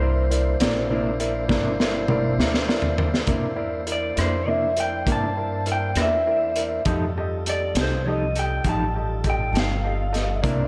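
A crunchy breakbeat drum kit with a high-tuned snare and tight kick drives this swaggering, gritty slow blues in 12/8 at 67 BPM in C mixolydian, alongside thumpy pizzicato upright bass on gut strings, a bright, brilliant upright piano with slapback echo, a lightly overdriven tonewheel organ holding sustained chords in the background through a stopped rotary speaker, and a dark, fingered electric guitar with tremolo, while a slightly broken-up, lo-fi guitar through a small old amp carries the melody with spring reverb and slapback echo, a drum fill from 1.5 s leading into a clean electric guitar solo at 3.3 s as the harmony moves from C9 to F9 at 6.9 s, all set in recital hall reverb with a big arena sound.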